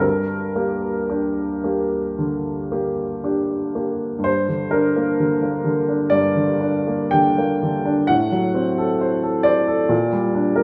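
A resonant stone room surrounds a woody, up-front upright piano with long sustain in this tender, serene romantic nocturne in G minor, played solo with rubato at 54-68 BPM in 4/4, spanning G2 to G5 and moving from G minor toward an A minor sixth chord at 8.1 seconds before settling on G minor over B-flat at 9.9 seconds in a short passage cut from a longer piece.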